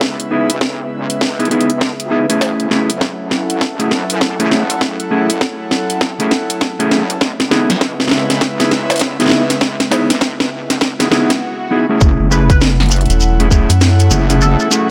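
Glitch hop with a playful, funky swing, this excerpt opens on a nostalgic, warbling tape-like pad and an airy, breathy pad, both pumping, alongside a heavy, chorused wobble bass in the background, while an overdriven, tight kick and a kit of cracking snare and bright hats sit up front and a dark, clean, fingered electric guitar adds gritty stabs with delay over C#m7 and F#m7 chords. A drum fill runs through the build-up until an electronic swell at 11.1 seconds leads to the drop at 12.0 seconds, where a grainy, close shekere enters and an edgy, tearing sync lead with lush chorus, vibrato and delay carries the melody. A rubbery, bouncy square bass punches in briefly at 13.1 seconds, all set in light digital ambience.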